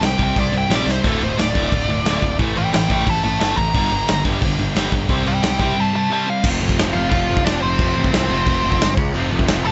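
A straight 4/4 pulse at 178 BPM drives this aggressive, urgent punk rock cut, led by a big acoustic drum kit up front whose dark, smooth tone, punchy kick, medium-tuned snare, hi-hat and crash cymbal include a fill at 0.9 seconds. A nasal lead guitar with a parked wah solos until 6.4 seconds and carries its melody to the end over a growly fuzz bass and a background bed of riffing guitars: two bright distorted ones, one double-tracked and the other stopping at 6.4 seconds, plus a duskier overdriven one. The sound is dry and dull at the very top as the chords move from C through Dm, Am and Gm before settling on F.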